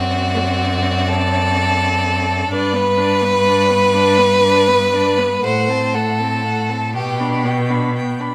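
A moderate recital hall reverb surrounds this brief cut from a longer classical piece: a slow romantic movement for string quartet in 6/8, played with a tender mood and free rubato timing. The first violin carries the melody between B4 and B5 with a focused, vibrato-laden tone, yet it sits in the background of the blend. The second violin's line is smooth, even and up front, and it drops out at 7.4 seconds while the others play on to the close at 8.3 seconds. The viola fills in the accompaniment with a warm, smooth vibrato, and the cello anchors the bass with a rich, intense tone placed up front. The harmony moves from D7/F# to G, then passes through F#dim/A before settling on G/B.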